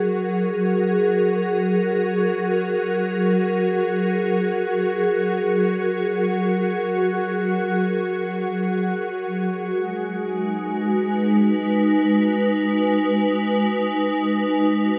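Soaked in a lush hall reverb, this melancholic, spacious ambient fragment in free time rests on a single evolving wavetable pad, bright, detuned and up front, whose slow-attack, sustained tones morph through ensemble chorus, built-in reverb and delay from a Gbadd9 chord to Abm7 at 9.6 seconds.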